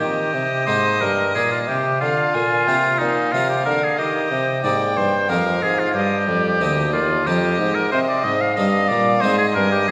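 From the first beat, a clear, up-front oboe sings the solemn, flowing melody of this baroque-style sonata movement in Eb major at 91 BPM in 3/4, alongside a dark, nasal gut-string violin on a distant second line, a brilliant, plucked French-style harpsichord and a warm, soft-attacked bassoon on the bass, the whole brief cut from a longer piece set in a wet scoring-stage reverb.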